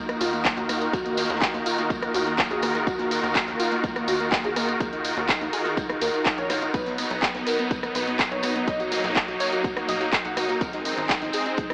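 Progressive house at 124 BPM in Eb minor, this emotional, bittersweet excerpt sets a detuned, up-front supersaw swell holding sustained chords over a tight, nasal sequencer bass in the background, while a soft, round pluck spins arpeggios through ensemble chorus and tape echo, with the synths pumping to the sidechain. A punchy, layered electronic kick arrives at 0.5 seconds beneath a pop drum kit with bright hats, handclaps, ride and rim click, joined by a jingly tambourine and a very quiet, muffled vintage brush kit playing hi-hat, ride and snare. The chords move from Ebmadd9 to B and then Ab, all heard through an AM radio sound with light small-room reverb.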